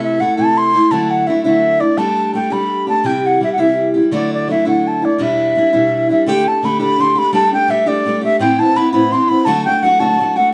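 The recording sounds like a band playing live in one room, with a wet studio reverb that leaves a short tail. This wild, driving Celtic jig in 6/8 is cut from a longer piece. A wooden baroque flute carries the melody up front, its airy, bright tone shaped by tongued notes, vibrato and an unsteady delivery. Beside it, a fingerpicked steel-string acoustic guitar plays the accompaniment on fresh strings, with audible finger squeak and a concert presence that also sits up front. Both parts play together for the full 10.5 seconds, moving through chords such as Am/C, Dadd9, Gsus2 and Em7 before a new section at 6.3 seconds turns toward Dsus4, Amadd9 and a closing D.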